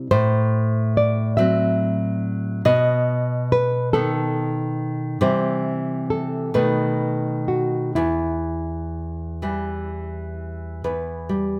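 Set in 6/8 and played with free, breathing rubato, this slow romantic duo for two nylon-string guitars feels yearning and solemn. One guitar carries the melody in a dark, woody voice, thumb-plucked on old strings that lend it a worn, aged character. The second guitar supplies the accompaniment from the low bass up into the middle register, fingerpicked with a warm tone and sitting up front, its finger squeaks audible through the close, detailed microphones. The harmony moves from F#dim/A to B7, then to C at 5.2 seconds and back to B7 before settling on E minor at 8.0 seconds. Both parts play throughout this short passage, which is cut from a longer piece and ends at 11.6 seconds, with a moderate recital-hall reverb giving the pair a sense of space.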